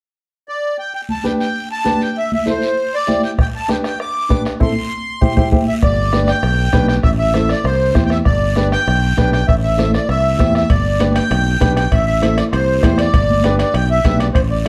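A sweet, reedy accordion with a light tremolo tuning carries the melody up front in this festive, danceable cumbia, joined almost at once by a raspy guiro in the background, high-tuned congas with a thick skin and a woody upright piano, while a soft-beater bombo arrives at 3.4 s, a bright, growly fingered electric bass comes in at 5.8 s just after a band accent, and ringing metal-shell timbales enter at 10.7 s, the whole group heard from further back in a moderate studio reverb.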